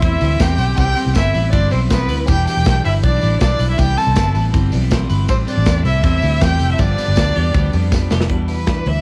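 A straight 4/4 beat at 160 BPM drives this youthful, nostalgic slice of jangly indie pop in C major, cut from a longer piece. A modern studio drum kit, recorded in a small room with a tight kick and medium-tuned snare, plays hi-hat, ride, kick and snare and closes with a fill from 7.9 to 8.3 seconds. A dark, round, foam-muted fingered electric bass sits punchy and up front, and a jingly, band-limited tambourine enters at 0.2 seconds in the background. Up top, a lone bowed violin carries the melody with vibrato and portamento, expressive yet distant, while a bright, present pop-style trumpet plays a second line beneath it. Behind them, a twangy, compressed twelve-string electric guitar picks clean arpeggios through tube saturation, and a full-bodied jumbo steel-string acoustic guitar is fingerpicked with audible finger squeaks, as the harmony moves through Am7, Cmaj7, Em7 and G7. Cassette tape colouring on most of the parts, light reverb and vinyl crackle give the whole a homemade character.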